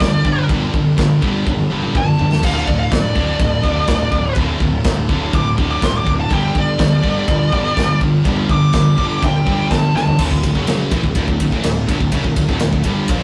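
A high-gain lead guitar solo opens this heavy metal excerpt over a relentless, epic wall of sound, its distorted, picked tone singing between D5 and D6 at a straight 124 BPM in D major. Beneath it, three high-gain rhythm guitars drive the riff in the low register. One is very quiet, one sits in the background, and one is double-tracked, all with a bright, picked edge. A fuzz-driven electric bass adds a growly, overdriven low end, also in the background. Up front, an acoustic studio kit with a tight kick and medium-tuned snare works through china, crash and ride cymbals and toms, with a fill at 1.5 seconds. The solo ends at 10.2 seconds as the harmony settles on D and the rhythm section carries on, all within a rough rehearsal-room sound with warm saturation and moderate reverb.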